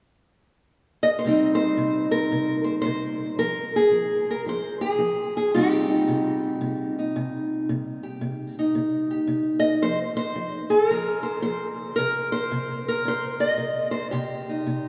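Acoustic country blues with a smoky, soulful swing, this short cut from a longer piece features a dark, boxy parlour steel-string guitar fingerpicked up front from 1.0 seconds, its lines moving between a C minor chord and unaccompanied passages while a cathedral reverb with a long 4.4-second tail fills the church-like space around it.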